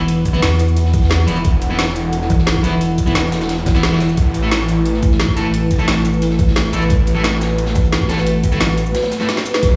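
A heavy, pulsing pluck wobble bass sits up front in this dark, aggressive slice of technical drum and bass at 176 BPM, its saturated, compressed sine tone thickened with chorus as the harmony moves from E5 to A5 at 4.2 seconds. From 1.3 seconds a detuned saw bass joins, lush and thick with unison sawtooth voices, overdrive and chorus, also pushed to the front of the mix. Beneath them a deep, moody analog pad holds sustained chords with a slow attack and long release, pumping with sidechain. The drums stack an overdriven, knocking electronic kick with a layered electronic kit of woody snare, bright hats and cabasa, while a gritty acoustic breakbeat kit with a rolled-off top, filtered hats and snare sits in the background, and a short drum fill arrives near the close. Stabs of double-tracked, picked electric guitar cut through with bright distortion and tape echo, all set in stone-room reverb and digital ambience, as if played on a big sound system in a bare room.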